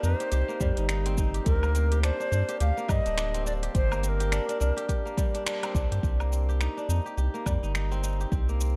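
A round, nasal analog bass with sidechain pumping sits up front in this hypnotic, mystical organic downtempo excerpt, joined by crisp fingerpicked kora arpeggios ringing through tape echo, a breathy, reedy ney melody with vibrato and delay that stops at 5.2 s, a swung deep house kit of finger snaps, metallic hi-hat, shaker and woodblock, and a deep electronic kick entering at 0.6 s, with a band accent at 5.5 s, all set in a digital ambience with a dark, warm production.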